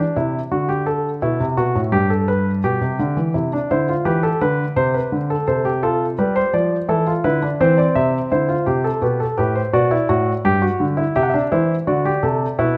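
Set in a moderate recital-hall reverb, this lively, elegant baroque-style three-part fugue for solo grand piano moves at a straight 84 BPM in 4/4 and C major, tuned slightly low to A4 = 437 Hz, its intimate, up-front tone carrying audible action noise and short sustain across a G2 to F#5 range as the harmony passes through chords like Dm7/C, G7 and Cadd9/G before arriving at a D7 at 11.9 seconds in this passage cut from a longer piece.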